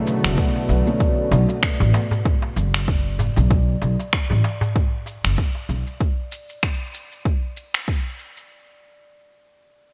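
A bright, 1980s-style digital sheen and a lush hall reverb frame this short, meditative fragment of organic downtempo, its swung 4/4 groove settling into a hypnotic pulse over a single Bm7 chord. A soft, felt-muted upright piano, dark and intimate with audible action noise, sits in the background and is gone by 1.3 seconds, its mellow tone shaped by a filter sweep, sidechain pumping and digital delay. Beside it, a tense, string-like bowed drone of detuned sawtooth layers with vibrato and a slow attack holds sustained chords through its own filter sweep until 3.5 seconds, pumping against the beat. A ringing bronze singing bowl adds a brief, airy metallic shimmer with slow beating, while the woody, pizzicato upright bass sits up front with sidechain pumping. The rhythm blends an overdriven, up-front deep electronic kick and layered electronic shaker and finger snaps, which carry on to 8.5 seconds, with a crisp, close and dry metal-shelled darbuka.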